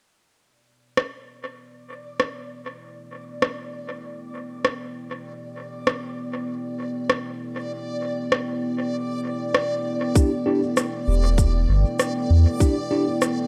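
Hazy and deep, this ambient dub excerpt at 98 BPM in E minor rests on an Em7 chord, opening with an overdriven electronic rim click and cabasa with dub echo at 1.0 seconds as a dark, detuned sawtooth pad fades in under a reversed, swelling granular texture, before a tight overdriven kick, clean tine electric piano stabs with dub echo and a round sine sub bass arrive near the end, all in a light reverb.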